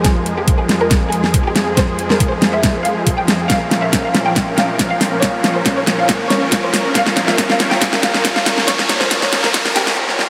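Drenched in a wet, dreamy ambient reverb, this aggressive, menacing half-time heavy wobble dubstep build-up, cut from a longer piece, sets a bright, lightly vibrato-tinged chamber violin section with delay over lush, detuned supersaw chords moving from Fm to Bbm with chorus, sidechain pumping and a sweeping low-pass filter, while an up-front kit with a huge snare and metallic hats plays a fill over a knocking, tape-warm electronic kick, and a very quiet riser enters at 1.4 s before a noise sweep comes in at 8.7 s.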